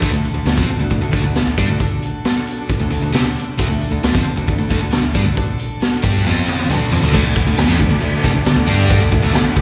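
Heard through a live venue's PA with recital-hall reverb and a dulled top end, this short, swaggering, sunny classic rock cut opens on a raw, gritty garage drum kit up front with a punchy kick, a round, dark fingered bass, a bright crunchy overdriven guitar riff set back in the mix alongside a very quiet sludgy distorted guitar, and a picked steel-string acoustic guitar with audible finger squeak, the crunchy guitar and the acoustic both carrying slapback echo. A drum fill at 6.2 seconds leads over a brief F5 chord back to D, and at 7.1 seconds the acoustic drops out as a warbling, vintage organ-like ensemble string pad with chorus and a very quiet double-tracked semi-hollow guitar riff come in. A faint, jingly tambourine joins from 7.6 seconds.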